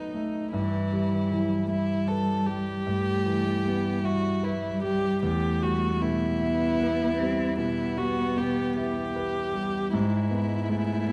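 An up-front violin carries the melody with light vibrato, a soft attack and an airy sul tasto bow, while a woody, darker cello sings a second line in the background and a vintage concert grand, intimate and smooth with deep bass and audible action noise, supplies the accompaniment. This slow, rubato romantic movement for piano trio in 12/8 feels solemn and elegiac, its harmony settling from B7/F# into E minor before turning to E/G# near 9.9 seconds. A moderate scoring-stage reverb and a dusky, warm production with vinyl crackle frame this brief fragment cut from a longer piece.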